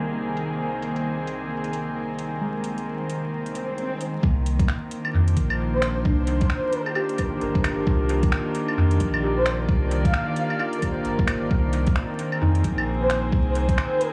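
A dark, floating bowed string section and muted, felt-like synth keys, pumping and drifting through chorus and tape echo in the background, open this rainy, nocturnal future garage cut in C minor at 132 BPM, soon joined by a swung kit of claves, finger snaps and metallic hi-hats trailed by dub echo. After an electronic swell, a deep, round sub bass and a knocking, up-front kick arrive at 4.2 seconds as the harmony moves from Abadd9/C to Cm11, and a breathy, flute-like synth lead with vibrato, cassette tape colour and dub echo enters at 5.7 seconds before the chords return to Abadd9. The echo-heavy, low-pass-filtered mix carries vinyl crackle and light reverb, and the excerpt is cut from a longer piece.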